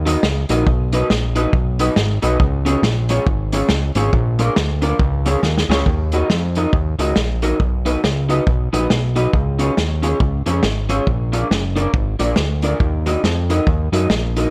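Mischievous and energetic, this short ska cut, taken from a longer piece, moves at 138 BPM in 4/4 with a swung eighth-note feel in Eb minor. A fat, thick analog bass built from detuned sawtooth and square waves sits up front with a fast attack, sustained notes and a filter sweep, holding down the low end. An electric guitar at the edge of break-up, picked and compressed with analog chorus and delay, carries the accompaniment in a slightly broken-up tone. A vintage acoustic drum kit with a small-room character, medium-tuned snare, tight kick, hi-hat and a rolled-off top keeps time, dropping a fill at 5.4 seconds just before the second section begins at 5.9 seconds. The chords cycle through Ebm, B, Db and Bb, and the mix stays dry and close with little reverb.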